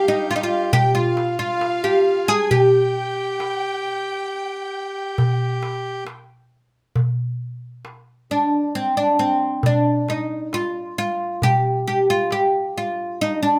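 A soulful, hypnotic passage of Arabic maqam ensemble music, cut from a longer piece and moving in a straight 10/8 metre. The plectrum-plucked oud carries the melody from start to finish, its fretless, double-strung voice sounding bright, woody and deep, placed up front in the mix. Alongside it, a reedy, hollow accordion and a lush, bowed violin section with vibrato and a soft attack trace second lines, both dropping out around 6 seconds. The darbuka enters at 0.7 seconds, its crisp metal-shell tone and hard hands heard up front with a small-room character. After the opening section gives way at 7.0 seconds, the oud and darbuka carry on as a pair, all within a moderate studio reverb.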